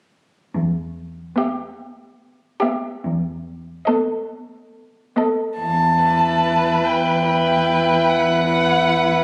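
Captured on a phone in the room, this slow, yearning fragment of a romantic string quartet movement carries a club-like reverb and a compressed, veiled sound, with all four players muted. A lone cello opens at 0.5 seconds on a low E, and at 1.4 seconds the two violins and viola join in E minor: one violin sings the elegiac melody in its upper register with vibrato, the other traces a second line beneath it, and the soft-edged viola fills in the accompaniment. The 12/8 pulse at 48 dotted-quarter beats per minute moves with a free, rubato feel, and the music passes into a new section at 5.6 seconds before the fragment breaks off.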